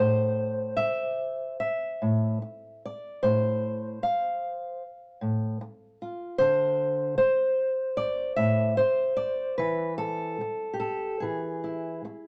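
A dark, up-front fingerpicked steel-string acoustic guitar with an auditorium-like body carries this haunting, intimate folk fragment alone, reaching from A2 to F5 in a loose, rubato 4/4. The harmony opens unaccompanied by chords before moving through F/A at 3.2 seconds, then Dsus2 and Esus4. A moderate small-room ambience gives the playing a close, private air in this brief passage cut from a longer piece.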